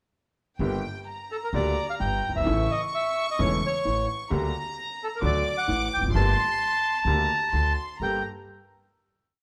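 A short, tense and sultry tango in G minor at 130 BPM with a rubato feel opens at 0.6 s as a clear, up-front upright piano and a dark, thumpy pizzicato gut-string upright bass mark the tango rhythm in two, while a bowed violin section with a smooth, gut-string tone and light vibrato carries a high counter-melody. At 1.3 s a reedy, band-limited bandoneon takes the lead with a vintage, motif-based melody in period phrases, sitting forward in the mix. The ensemble plays live together in a moderately reverberant large studio, and the whole piece settles on a final G minor add9 chord at 8.0 s.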